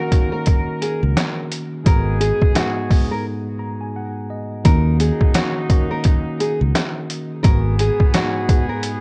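A dry, gritty home cassette sound frames this moody boom-bap hip-hop excerpt at 86 BPM in Eb minor, swinging on the 16ths as it moves between Ebm7 and Abm7. Up front, a compressed, pitched-down sampler-style drum kit with a thumpy kick and medium-tuned snare sits alongside a dark, round, punchy fingered electric bass that enters at 1.0 seconds. Around them, a fingerpicked classical nylon-string guitar carries the melody with audible finger squeak, a worn, slightly out-of-tune tine electric piano supplies the accompaniment, and a quiet horn section adds smooth, lightly vibrato stabs touched with tape echo, with a break from 3.3 to 4.7 seconds before the opening section returns.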